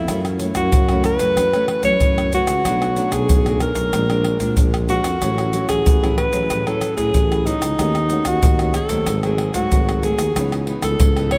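Samba and choro at 94 BPM in 4/4 with a sunny, joyful mood, this short cut from a longer piece puts a breathy alto saxophone up front, its subtone melody smooth on top and jazz-inflected, while a mellow tuba plays a distant, roomy, classical-style bass line, both shaded with light vibrato. Behind them, a small nylon-string guitar is fingerpicked in the background with audible finger squeak, and from 0.1 s a close, dry group of tube shaker, deep surdo, pandeiro and tamborim is struck with hard hands. A moderate cathedral reverb sets the music in a vast, echoing space as the harmony travels from F#m7 to C#m9.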